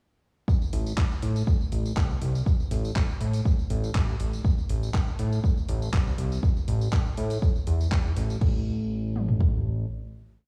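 Progressive house with a driving, emotional mood, this short complete piece moves at a straight four-on-the-floor pulse and spends nearly all its length in a drop from 0.5 seconds before settling into a final note at 8.4 seconds. A house drum kit carries the punchy, overdriven kick along with mid and floor toms, sitting up front with a small room reverb around it. A second, pop-style electronic kit sits much lower in the mix, adding metallic half-open hats, handclaps, tambourine and crash in a programmed backbeat. A fat analog bass enters at 0.7 seconds, its thick, detuned sawtooth tone driven through tube saturation with sidechain pumping, playing off-beat notes with a fast attack, sustained body and a filter sweep. The overall sound is dry and close yet carries the impression of a big sound system in a bare, stony room, with the bass ringing on into the final note.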